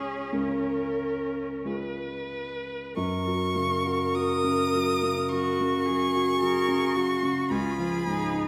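A wet, roomy reverb surrounds this short passage from a slow, lyrical and tender romantic piano quartet movement, played with flexible rubato. A clear, focused solo violin sits up front with vibrato as it carries the melody, while a rich, expressive cello shapes a second line with soft attacks, portamento and vibrato, and a smooth-topped viola fills in the accompaniment. A dark, mellow grand piano, also up front, anchors the harmony, which shifts to a new section at 3.0 s.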